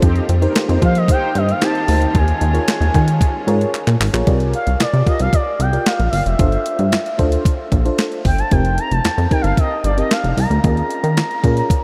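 A crisp, thumpy 8-bit drum machine and a punchy, plucky analog bass drive this slick, danceable early-eighties boogie funk excerpt at 113 BPM, joined from the start by a lush FM electric piano with a soft pad layer, a very quiet dark synth brass line that drops out at 1.8 seconds, and clear bowed strings in the background until 4.2 seconds, while from 0.8 seconds a smooth, expressive portamento lead with vibrato and diffuse ambient delay glides over sus4 ninth chords, a drum fill at 3.7 seconds leads into the next section, and a huge ambient reverb soaks the dreamy mix.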